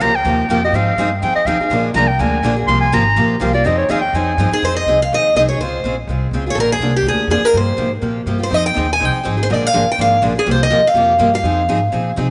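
A breathy, lightly vibrato clarinet opens this fiery jazz manouche excerpt with an up-front solo in F minor, swinging at 247 BPM over a dark, thumpy, gut-strung upright bass and two boxy parlour guitars, both marked by finger squeak and one sitting forward. At about 4.5 seconds the clarinet gives way to a full-bodied dreadnought guitar carrying the melody through a second section, while the second accompanying guitar drops out and returns at 8.5 seconds. A moderate plate reverb lends the bright, picked strings some space over the cycling C7sus4, Fm9 and Bb7 changes.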